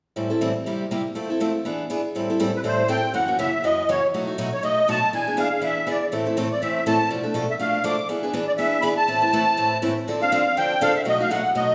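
A bright, picked steel-string acoustic guitar opens this fast, swinging jazz excerpt in A minor at 243 BPM, sitting up front as it comps through brisk changes like Am7, C7, Fmaj7 and E7. At 2.6 seconds a reedy, shimmering musette accordion enters with a high melody, airy and equally forward, lending the passage a virtuosic flair. Both ring out in a wet, resonant hall acoustic with a lingering reverb tail, and the clip cuts off at 11.7 seconds on a B7 chord.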